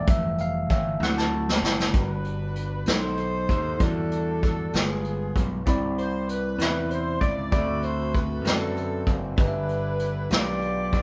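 A slow 6/8 sway at 64 dotted-quarter beats per minute carries this hopeful, jubilant gospel fragment in G major, with a vintage brush drum kit sitting up front with a punchy kick, a medium-tuned snare and a rolled-off top. A gritty slap bass, overdriven and bright, anchors the low end, while a bell-like tine electric piano rings clean over the opening Fmaj9 and D7 chords and leads the first moments. A brushed drum fill at 1.0 seconds ushers in the second section, where a breathy alto saxophone with a soft subtone and light jazz vibrato and a warm pop-style horn section enter together at 2.0 seconds to carry the melody. The harmony moves through rich colours such as Gmaj7, B7b9, Em9, Cmaj9 and D13 before settling on G6 and G7/B. The band plays live in one room, held together by a moderate studio reverb.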